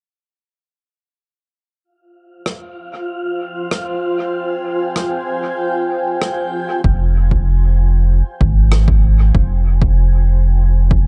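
Ambient dub in a meditative, spacious mood, where a breathy, wind-like noise layer and a cloudy, detuned granular pad holding sustained chords drift in through their own reverb, the pad moving through a filter sweep. A distant, roomy rim click carries dub echo, and at 6.8 seconds a round, deep sub bass arrives up front alongside a punchy, overdriven electronic kick set in the background. The production is dark and warm overall, and the passage is cut from a longer piece.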